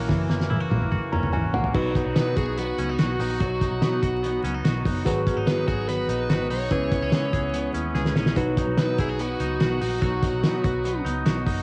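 A hazy home-cassette sound, dusted with vinyl crackle and light reverb, frames this short cut from a longer piece of jangly indie pop in B major, moving at a straight 145 BPM in 4/4 with a youthful, nostalgic mood. Up front, a cloth-damped drum kit thuds with a fat snare, tight kick and dark cymbals, its muffled, gritty tone carrying vintage 12-bit sampler grit, and it opens with a fill from 0.1 s before a second short fill near 8.0 s. Beneath it sits a dark, round, foam-muted electric bass, while a twangy, clean electric guitar plays compressed arpeggios through spring reverb. A reedy, mellow electric piano with fast tremolo adds its own fill just before the opening F#7 resolves to B, and a full-bodied jumbo steel-string acoustic guitar with fresh strings stays in the background. From 2.2 s a biting, overdriven lead guitar carries the melody over a progression that moves from B through G#m7 and C#m7 before returning home to B.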